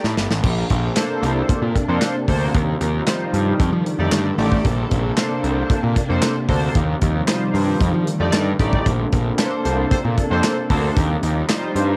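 Danceable and smooth, this short cut of early-eighties boogie funk opens with a drum fill before settling into a straight groove in four. The modern studio kit sits up front, with a punchy kick, a medium-tuned snare, hi-hat, handclaps and crash cymbal ringing in a pumping room, while a fuzzy picked electric bass, overdriven and direct, drives the low end just as prominently. A glossy, retro chorused polysynth carries the accompaniment with sustained, fast-attack chords that carry a cassette-tape tint. Behind it, a silky string machine enters at 0.4 seconds with slow-blooming, long-releasing pads soaked in ensemble chorus, cycling through Bbmaj9, Eb69 and F13. At 9.6 seconds a tight, distant horn section slips in underneath with a vibrato-laced second line doubled in octaves, all set in a small, homely room with a lo-fi cassette character.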